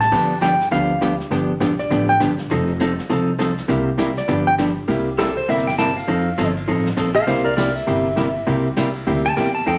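Set in a wet studio reverb, this cheerful, swinging western swing excerpt at 201 BPM in C mixolydian opens with a dark, clean lap steel guitar sliding the melody with volume swells until 4.5 seconds, then hands the spotlight to a bright, twangy pedal steel guitar played with fingerpicks from 5.2 seconds, while a compressed, hollow-body jazz guitar picks chords through G7, F7 and C7, a woody, thumpy upright bass with gut strings holds the low end, and a vintage brush kit with dark cymbals and a tight kick keeps time.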